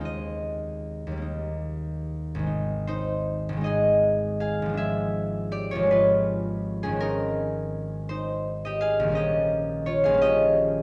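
Dreamy and graceful, this classical excerpt features a solo concert harp drifting through a 6/8 metre with a flexible, rubato feel. The harp carries the whole piece alone from 0.0 to 10.8 seconds, its fingerpicked notes ringing out across a span from Ab1 to Ab5. Its tone is acoustic and warm, sitting up front even as the listener seems placed further back in a recital hall whose wet reverb, with an RT60 of 1.4 s, lets each note bloom and linger. A brief opening section gives way at 2.5 seconds to a longer passage that moves through harmonies including Ab, Abdim7 and Eb7/Bb. The top end is gently rounded, with nothing above 10.8 kHz, lending the sound a soft, hazy glow as the fragment is cut from a longer piece.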